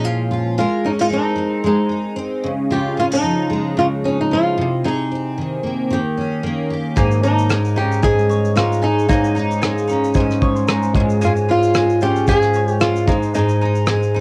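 Acoustic pop with a sunny, easy-going mood, this cut from a longer piece moves at 113 BPM in 4/4 with a light sixteenth-note swing. From the start, a fingerpicked flamenco guitar with fresh strings carries the melody up front, while a double-tracked, full-bodied jumbo steel-string acoustic guitar picks the accompaniment through chords such as Bbm7, Abadd9 and Dbadd9 before landing on Eb7. At 7.0 seconds the arrangement fills out: a cloth-damped, thuddy drum kit sets down a tight, muffled kick with rim click and shaker, a woody double-strung mandolin spins arpeggios, and a reedy, barky overdriven electric piano growls through a combo amp in the background. The drums sound saturated and gritty with a rolled-off top, sitting close to the listener alongside the two guitars. Everything has the intimate feel of a home cassette recording in a small booth with a short, moderate ambience. The flamenco melody closes at 13.8 seconds as the harmony settles onto Ab.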